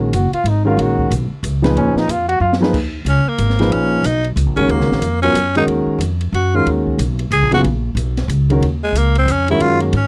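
A growling, raspy tenor saxophone carries the melody in this cool, spiritual modal jazz excerpt in a swinging three-beat metre. It enters at 3.1 s and solos with light vibrato and a soft attack through to the end. Before that, a punchy, forceful trombone takes a short solo that ends at 2.5 s; it is bright and jazz-inflected, and sits at a roomy distance. A drum fill at 2.4 s hands the solo over to the saxophone. Underneath, a warm concert grand piano with deep bass provides accompaniment over an Ebm11 chord, and a woody pizzicato upright bass sits up front. An open acoustic drum kit plays quietly behind them, with ride, hi-hat and crash cymbals, a high-tuned snare and a boomy kick, all in a dry, close studio sound in the manner of the 1970s.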